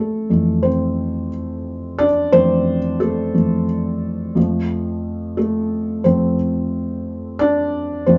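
This hopeful, anthemic pop fragment, cut from a longer piece, sits at 89 BPM in a straight 4/4 in F major, tuned to A4 = 438 Hz. A felt-muted upright piano plays alone for the full 8.2 seconds, spanning F2 to D5 and moving from Fmaj7 to Dm/F at 4.4 seconds. Its tone is dark and intimate, with thick felt and audible action noise placed up front, in a live room with moderate studio reverb and a top end that stops above 7.6 kHz.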